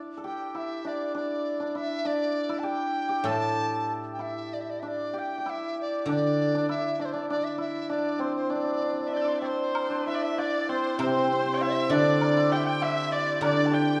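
A reedy, buzzing large dizi carries the festive, graceful melody of this Chinese traditional chamber piece, floating in free rubato over a 2/4 pulse near 98 BPM in the D shang mode, with a shimmering hammered dulcimer ringing beneath it from the very start. A silvery guzheng, played with fingerpicks, adds low accompaniment from 3.2 to 7.9 seconds and again from 11.0 seconds, and an earthy, bowed erhu with portamento joins as a second line at 9.1 seconds, followed by a very quiet, dry woodblock at 9.8 seconds. The ensemble sits in the generous reverb of a recital hall, and the recording is cut from a longer piece.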